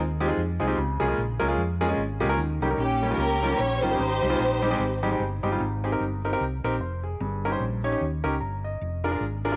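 Uptempo gospel in Ab major at 149 BPM, with a swung feel in 4/4 and a hopeful, reverent mood, heard as a short cut from a longer piece. A hollow-body, short-scale fingered electric bass opens at 0.0 s with a dark, round, amped tone sitting up front, and a clear grand piano joins almost at once to carry the accompaniment with polished, intimate playing, long sustain and audible action noise. A studio string section takes the melody between 2.8 and 5.2 s, its bowed ensemble sound lush and expressive, with vibrato and a smooth top. The harmony moves from Fm7 and Db6 through Eb7 to Abmaj7, then through Eb7/G to Bb7/F in the second section. The piano and strings carry a cassette tape colour, and the whole home recording on cassette sits in light studio reverb.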